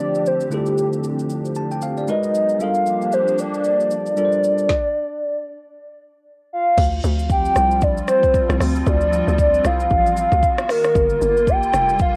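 A dark, warbling clarinet-like synth lead carries the melody up front in this hypnotic, deep amapiano excerpt, its vintage tone colored by chorus, tape echo and cassette grit. Bright, bell-like tine electric piano chords ring clean until 4.7 seconds, while a hollow, flute-like pad with ensemble chorus and sidechain pumping sustains beneath a deep house kit of deep kick, woody snare, smooth hi-hats, shaker, rim click and crash. After a brief stop, the drop at 6.8 seconds brings in a bouncy, percussive log drum bass, in a lightly reverberant home cassette recording.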